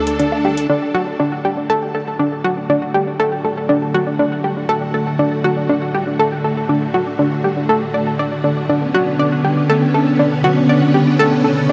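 A bright, up-front analog pluck carries this cosmic, expansive piece of sequencer-driven space music, playing a riff in D major at 120 BPM in a straight 4/4 throughout the cut-down excerpt. Its sawtooth and square-wave tone, with a sub octave and a fast, short filter pluck, is thickened by chorus, tape echo and shimmer reverb. Alongside it, a lush, vintage string machine holds sustained full-ensemble chords with a soft attack and ensemble chorus, fading in from 0.7 s to 11.7 s. For the opening moment a deep, dark, wave-folded analog bass sounds a single D2, while electronic percussion of metallic hi-hat and tape-touched woodblock, carried on tape echo, ticks briefly before both drop away at 0.7 s. The harmony moves from a D5 to D, and a huge ambient reverb with a 7.3-second tail places everything in a vast, echoing space.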